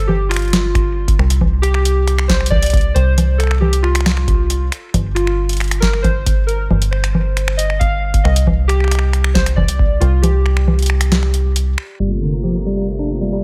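IDM excerpt in G minor at 136 BPM, eerie and melancholic, with a straight 4/4 pulse. Warbling lo-fi synth keys with a nostalgic, vintage square-and-sawtooth tone carry the melody through chorus and digital delay, over a dark, metallic FM bass that sits up front. A booming, overdriven analog drum machine supplies crisp snare, metallic hi-hats, congas and finger snaps, joined at 0.7 seconds by a deep, overdriven electronic kick that drops out at 9.9 seconds. After a break from 11.1 seconds, the closing passage at 12.0 seconds brings in a swirling, detuned sawtooth pad with phaser and chorus and a clean tine electric piano playing arpeggios under a filter sweep, followed moments later by a faint, tempo-synced pulsing texture in the background. The harmony moves through suspended and open chords before settling on Gm11, all within a filtered digital ambience.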